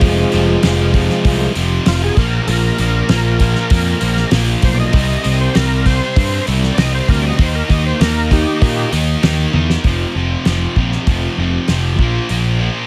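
With light reverb, this swaggering, driving classic rock excerpt features a gritty, thick overdriven tonewheel organ soloing through a slow rotary speaker and chorus vibrato until 8.9 seconds, over a bright, double-tracked distorted electric guitar riff, a dark, round fuzz bass sitting up front, and a dry 70s drum kit with a fat snare, tight kick and rolled-off top that plays a fill just before the shift to a new section at 9.8 seconds, where guitar, bass and drums carry on together.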